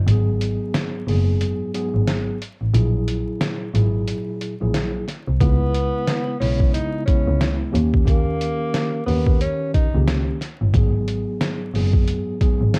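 Dark and moody, this boom-bap hip-hop fragment at 90 BPM in G# minor swings over a gritty, pitched-down sampler-style drum kit with a thumpy kick, a rich bowed double bass with vibrato and portamento up front, and a mellow tine electric piano colored by cassette tape through chords from G#m7 to D#7, while a breathy subtone tenor saxophone with scooped notes and analog delay takes a jazz-style solo from 5.4 to 10.0 seconds amid vinyl crackle and home-cassette ambience.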